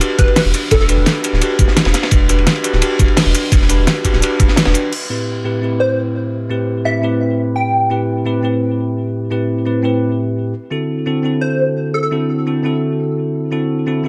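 A light reverb wraps this dreamy, rolling liquid drum and bass excerpt, cut from a longer piece and set at 171 BPM in A dorian with a straight 4/4 feel. A bright, bell-like tine electric piano sits up front throughout, clean and direct, with analog chorus and delay, moving through Em9, Am7 and D9. In the opening stretch, two drum kits stack up: a crunchy breakbeat kit, gritty and dark with a small-room, rolled-off top and filtered cymbals, hats and snare, beneath a tape-warm, up-front pop kit with a fat snare and crisp hats. A knocking electronic kick and a deep, round sine sub bass anchor the groove, and the kick briefly drops out just before the drums and bass fall away by 5.0 seconds. From there the electric piano carries on to 14.1 seconds, punctuated by short, catchy phrases from a plucky unison lead that first surfaces briefly at 0.2 seconds. The lead is a detuned square-and-sine sound with a noise layer and a moving notch, softened by ensemble chorus and tape echo.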